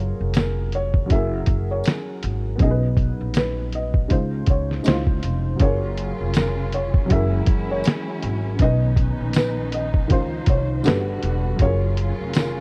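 A lo-fi sampler-style drum kit sits up front in this mellow, nostalgic lo-fi hip hop piece, entering at 0.3 seconds with a thumpy kick, fat snare and hi-hat, pitched down, compressed and muffled under vintage 12-bit sampler grit in a swung 4/4 groove. Alongside it, an acoustic upright bass, also up front, plays pizzicato on gut strings with a woody tone. A dark upright piano lays down boxy, slightly detuned chords with audible action noise, and a felt-muted upright piano carries a soft, thick-felt melody. A jingly tambourine sits in the background, in a live room. From 5.6 seconds a studio string section adds bowed, vibrato-rich sustained chords as the phrase repeats, with a brief Gmaj7 near the end, and the recording, cut from a longer piece, is steeped in worn, warbling cassette tape pitch drift.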